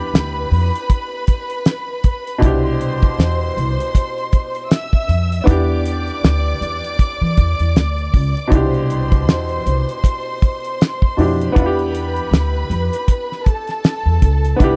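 A dry, close studio recording with little reverb frames this lush 1970s-style soul groove at 79 BPM, its sixteenths swung as the harmony moves between Em7 and Cmaj7. Up front, a cloth-damped drum kit thuds with a fat snare and tight kick beside a woody, thumpy pizzicato upright bass on gut strings, while a clear baby grand piano with short sustain supplies the accompaniment. A bowed studio string section adds a second line with soft attacks, sul tasto tone, vibrato and a smooth top, giving the cut a warm, intimate sheen.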